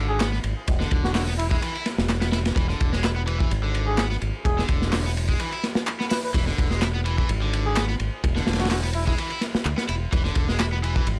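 Breakbeat in a swaggering, energetic mood, this short cut from a longer piece runs at 127 BPM in 4/4 with a light 16th-note swing, sitting on an E7 chord throughout. A crunchy breakbeat kit sits up front, its saturated, rolled-off sound pairing dark cymbals with a tight kick and a medium-tuned snare, while analog electronic handclaps add an overdriven snap. The fingered electric bass, bright and direct through an envelope filter, holds the low end from the very start. A cranked stack guitar plays a picked, overdriven riff with a low-pass filter and tape echo. Over the top, a bucket-muted trumpet carries the jazz-style solo melody with a veiled tone, light vibrato, a small-speaker character and its own tape echo, ending at 9.1 s while the other parts carry on toward the close of the excerpt. The whole recording is dry and gritty, with very little reverb.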